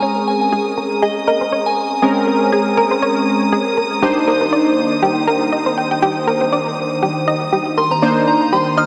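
Detuned sawtooth keys stab through chorus, phaser and tape echo over a warbling, nostalgic lo-fi pad from the first moment, alongside round analog pluck arpeggios, a faint, clear violin section holding a high note with light vibrato, and a soft, pure FM bell melody that drops out at 2.4 seconds and returns at 7.8, in this deep, smooth house excerpt at 120 BPM with a 55% swing on 16ths, moving from Bbm9 to Cm9 in a dreamy mix soaked in huge reverb.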